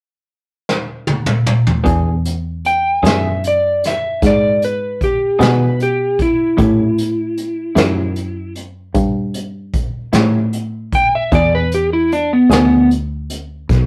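Swaggering and gritty, this slow blues in 12/8 moves at 51 beats per minute with a straight feel, cut from a longer piece and captured as a rough rehearsal-room recording with moderate studio reverb. A vintage brush drum kit opens with a fill at 0.7 seconds, its punchy kick, medium-tuned snare, hi-hat and toms sitting up front in a small, pumping room. From 1.8 seconds an electric guitar through a small old amp supplies picked, compressed accompaniment with a warm, tremolo-washed tone. At 1.9 seconds the harmony lands on E7 as a fingered electric bass enters, round, foam-muted and close, before the changes move to A7 and back to E7. From 2.7 seconds an up-front electric slide guitar carries the melody with a dark, slightly broken-up voice.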